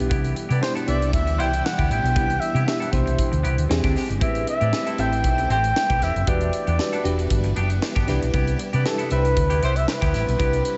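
Polished 1980s jazz-funk pop with an upbeat, glossy mood, moving in 4/4 with a light swing on the sixteenths, heard here as a short section cut from a longer piece. A breathy flugelhorn carries the melody from 0.6 s, mellow in tone with light vibrato and scooped notes in a jazz style, while a very quiet, distant horn section adds brief second lines near 0.5 s, 4.6 s and 8.7 s. Underneath, a bell-like FM electric piano sparkles with a subtle chorus, a clean, compressed semi-hollow electric guitar plays a riff, and a swirling phased string machine holds sustained chords in the background. A dark, round fingered electric bass sits up front alongside a crisp fusion drum kit with a punchy kick, a high-tuned snare and hi-hat. The harmony moves from Cmaj7 through E7alt, Am7 and Em7 back to Cmaj7, and the dreamy mix is soaked in a moderate cathedral reverb with its top end gently rolled off.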